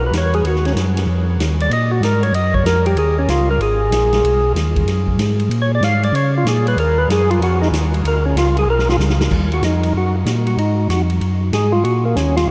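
Smoky and soulful, this soul jazz organ trio swings at 190 BPM in Eb minor, a short slice cut from a longer piece. A percussive tonewheel organ carries the melody as a solo, its fat, clean tone marked by third harmonic percussion, key click and a slow rotary speaker. Underneath, a second tonewheel organ holds down the bass with a mellow, round, dark voice that is lightly overdriven and colored by chorus vibrato and its own slow rotary speaker, sitting up front in the mix. A swinging big-band drum kit with dark cymbals, a medium-tuned snare and a punchy kick drives the groove, and a drum fill from 8.7 to 9.3 seconds marks the return to the top of the form. The harmony moves through Ebm7, B, Bbm7, Ebm and Bmadd9, returns to Ebm, then passes through Ab5 to Ebm7, all set in a vast, echoing space with a long ambient reverb tail.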